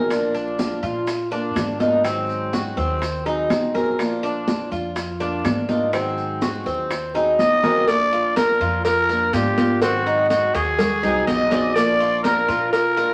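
Cuban son and guajira at 124 BPM in Bb major, this danceable excerpt opens with an up-front, metallic Cuban tres playing arpeggios over a boxy picked archtop guitar, a woody, thumpy pizzicato upright bass on gut strings, ringing high-tuned congas, round, saturated bongos and cowbell, and grainy maracas set distant in the background, all moving between Bb and Ab7. Alongside a drum fill at 7.4 seconds, a raspy, growling trumpet with vibrato and a smooth top steps forward as the solo voice. Studio reverb and vinyl crackle give the recording a vintage sheen.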